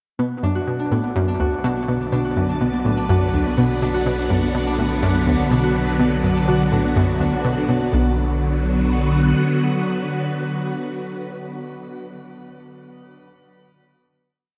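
A swirling, up-front phased string machine holds sustained B minor chords through shimmer reverb, fading in alongside a deep sine sub bass and a twinkling granular texture while a ringing Celtic harp loops a 7-step arpeggio that drifts against the bar and a bright, detuned analog pluck repeats an 8-step riff, making this mysterious, hypnotic piece of ambient space music at 124 BPM in a vast cathedral-like space before it settles on a final chord from 7.9 seconds.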